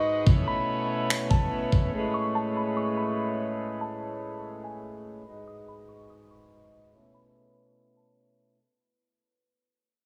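Atmospheric cloud-rap hip hop at 144 BPM in a half-time feel, this blissful, dreamy fragment rests on a reedy, breathing pedal harmonium that sits up front with sidechain pumping and a low-pass filter, holding sustained chords that move from B9sus4 through Amaj7 and G#m7. A smooth R&B drum kit of finger snaps and a knocking kick, electronic and re-recorded in a small room, appears only from 0.3 to 1.8 seconds. In the background, a glassy FM synth bell with a vintage, warbling character carries a high melody through chorus, tremolo and digital delay, all inside a heavily compressed, radio-like ambience with studio reverb, a filter sweep and a fade-out across its 8.6 seconds.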